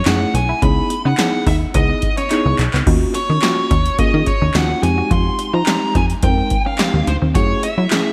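A dark, overdriven lead guitar with a parked wah and slapback echo carries the melody from the first moment over a clean, hollow-body guitar riff tucked in the background and a punchy, plucky sawtooth bass up front, joined at 0.1 s by a worn, slightly out-of-tune tine electric piano and an analog drum machine with a deep kick, metallic hats and handclaps, whose fill at 2.3 s marks this funky, danceable early-eighties boogie funk excerpt at 107 BPM as it moves through Gbm9, Dbm9, Ebm9 and Fm9 in a lush, arena-sized hall.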